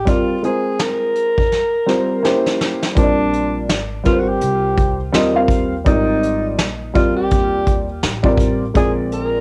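Nocturnal and smoky, this short jazz-hop excerpt moves at a swung 83 BPM, with a breathy alto saxophone carrying the melody through cassette tape and tape echo, its vibrato and scooped notes sounding distant and roomy. A dark, worn upright piano with audible action noise and slight detuning, also given a cassette tape tint, supplies intimate accompaniment over a woody, thumpy pizzicato upright bass on gut strings. A vintage brush drum kit with a punchy kick and rolled-off top plays a break from 0.1 seconds, with a fill starting at 1.5 seconds, before a new section opens at 3.0 seconds and chords such as Bb9, C7b9 and Abmaj9 turn under light reverb and a homemade cassette sound.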